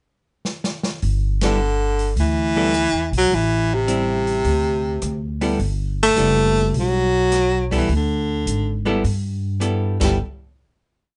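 Sophisticated and relaxed, this short small-group swing and bop piece opens with a drum fill on an airy kit with dark cymbals, boomy kick and time kept on the hi-hat, before a woody pizzicato upright bass enters at 1.0 seconds in a two-feel, joined at 1.4 seconds by a bright, scooping baritone saxophone stating vibrato-laden call phrases up front over clean, hollow-bodied archtop guitar comping in syncopated three- and four-note shapes, all in a lightly reverberant small room until a final hit at 10.2 seconds.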